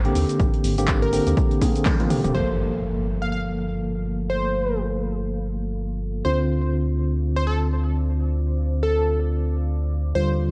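Deep house with a warm, smooth mood in a swung 4/4, this excerpt opens on a clean tine electric piano playing stabs through tremolo, sidechain pumping, filter and delay over a round, tube-saturated analog bass, while a punchy, tape-warm analog drum machine with handclaps, hi-hat, shaker, toms and crash runs until 2.5 seconds, joined by an up-front electronic kick from 0.4 to 2.0 seconds. A bright, catchy, detuned unison lead enters at 1.0 seconds with vibrato and delay, and after a drum fill, a background impact arrives at 2.3 seconds as the chords settle from Abmaj9#11 to Gm9. A deep, warbling, chorused ambient pad then drifts in under a filter sweep, and the whole mix is dreamy, soaked in plate reverb and softened by cassette tape.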